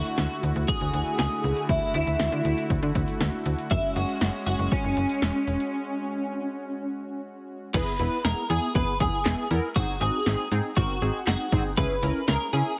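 A bright, twangy twelve-string electric guitar carries the melody up front in this cool, melancholic synth-pop excerpt at 119 BPM, its clean picked notes dressed in ensemble chorus and tape echo. Beneath it, a bold, vintage-toned brassy analog pad holds sustained, warbling chords with a soft attack, filter swell and vibrato. A punchy analog drum machine with kick, snare, handclaps, hi-hat and crash cymbal sits up front beside a snappy slap-like FM bass with a metallic attack. After a break at 5.7 seconds, the pad gives way at 7.7 seconds to a funky polysynth comp, its detuned sawtooth and square-wave tones shaped by ring modulation and a filter sweep, as the harmony moves from Dadd9 and F#sus2 to E, G#7 and C#m. Heavy radio-style multiband compression and light reverb leave the whole mix squeezed and close.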